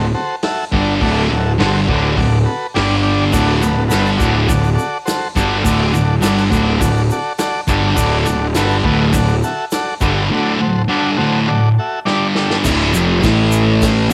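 A thick, double-tracked fuzz guitar riff sits up front in this raw, rowdy garage rock excerpt, driven by a punchy fuzz bass, a buzzy overdriven combo organ with light vibrato holding sustained chords until 12.6 seconds, a dark-cymbaled vintage drum kit that enters at 0.4 seconds and hits a fill before the closing chord change, and a grainy egg shaker joining at 3.3 seconds, all caught in a small room on a cassette home recording.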